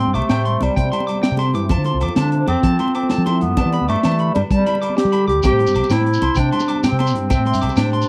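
A breathy, whispered clarinet carries the melody up front with light vibrato and scooped notes in this sunny, joyful highlife guitar band excerpt, set in 12/8 at 128 BPM in C major over a Csus2, F and Gadd9 progression. Beneath it, a round, punchy fingered electric bass and a gritty, saturated breakbeat drum kit with a high-tuned snare drive the groove, while a woody, boxy fingerpicked acoustic guitar with old strings accompanies and a twangy, slightly broken-up electric guitar plays high arpeggios through spring reverb and tape echo. Ringing congas and agogo bells sit in the background, a drum fill arrives at 5.0 seconds, and a grainy shekere joins at 5.4 seconds, all captured in a dry, close 1970s-style studio sound.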